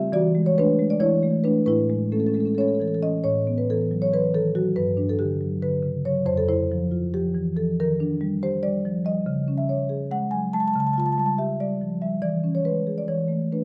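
Dark, warm production places a woody, round marimba up front in a moderate recital-hall reverb. This excerpt from a longer contemporary classical piece for solo marimba has a playful mood, with soft mallets ranging from F2 to A5 in a rubato 7/8 counted at 278 BPM in eighths. After an opening built on E9, E7sus4 and Amaj9, a new section begins at 3.2 seconds and drifts through Gmaj7, D#maj7 and C#m before settling on E6 and E7sus4 by 13.1 seconds.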